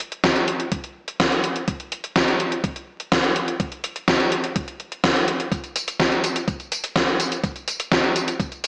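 Melodramatic and danceable, this short italo disco cut runs on a straight 4/4 groove built entirely from drums: an up-front, overdriven 80s digital drum machine drives hi-hat, tambourine and a gated-reverb snare, while a gritty, thumpy electronic kick sits lower in the mix from 0.2 seconds. Both parts sound sampler-style and re-recorded in a large room, with the kick carrying a tape-warm, compressed weight. A wet digital room reverb, vinyl crackle and a small-speaker tone colour the whole, and the passage shifts into a new section at 5.5 seconds.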